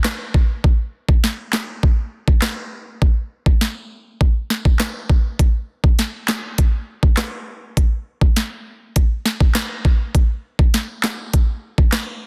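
Bouncy and sultry, this short dancehall excerpt, cut from a longer piece, moves at 101 BPM in a straight 4/4 feel. Its only part is an electronic island pop drum kit with handclaps, hi-hat, kick drum, rim click and snare drum, playing from 0.0 to 12.1 seconds. The kit sits up front with a knocking kick, a sharp snare and crisp hats, all given a gritty overdriven edge. A break runs from the start to 5.4 seconds. The sound is dry, with little reverb, and the master is dense and heavily limited in a modern style.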